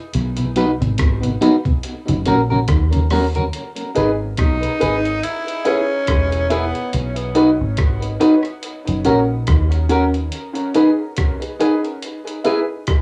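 A gritty, compressed sampler-style drum kit with a thumpy kick, hi-hat and rim click opens this heavy, spacious dub reggae excerpt at 71 BPM in G# minor, alongside a round, punchy fingered electric bass. A mellow tonewheel organ with key click and slow rotary speaker, a clean picked electric guitar and a dark, woody upright piano playing stabs fill out the arrangement, all soaked in cassette grit, dub echo and plate reverb. A raspy, edgy tenor saxophone with vibrato takes a brief solo from 4.4 seconds, and the bass drops out at 10.3 seconds, leaving the drums, guitar and piano in a small, wet booth ambience.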